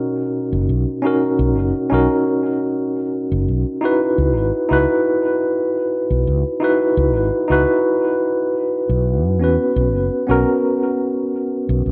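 In a straight 4/4 groove, this wistful, warm sunset chillout fragment of a longer piece opens on a worn, slightly out-of-tune tine electric piano carrying the accompaniment through its built-in speakers, lightly overdriven and trailed by a digital delay. A dark, round fretless electric bass joins at 0.5 s, amped and close alongside the piano, both sitting prominently in the mix. A wet plate reverb bathes the recording as the harmony moves from Bmaj7 to C#m11 at 4.2 s and settles on F#add11 near the end.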